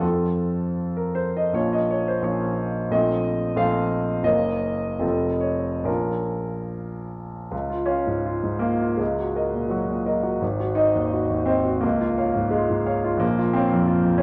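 A clear, open grand piano sits up front with long sustain, carrying this brooding, stormy Romantic character piece alone across its range from F1 to F5. It moves in 2/4 with rubato at roughly 66-94 BPM, opening in Bb minor before turning to Db major at 7.5 s, with chords such as Gb, F7 and Ab7 along the way. A wet stone-room reverb and the worn, warbling pitch drift of old cassette tape colour this short fragment of a longer work.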